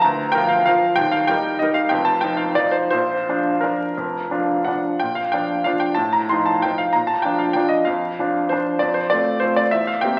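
Heard through the crackle of a very old 78 rpm record and the wet reverb of a recital hall, this brief, graceful classical piano waltz in Bb major sways in 3/4 with free rubato at 166-206 BPM, as a solo upright piano, brilliant, woody and slightly detuned, with audible action noise and an intimate, up-front presence, spans D1 to C6 through a sparkling phrase that repeats from 5.0 seconds before the cut at 10.2 seconds.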